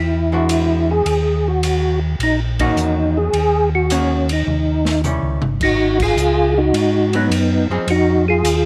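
Late-night and soulful, this swung soul jazz organ trio excerpt sets a round, key-clicking tonewheel organ melody with percussive third-harmonic sparkle over a mellow organ bass line, both turning through a slow rotary speaker with chorus vibrato, while a dark, picked hollow-body archtop guitar comps from 0.3 seconds and an airy small-room drum kit with dark cymbals and a boomy kick joins at 0.5 seconds, playing a drum fill from 4.5 to 5.6 seconds as the whole band lands accents along the way before the passage moves into a new section.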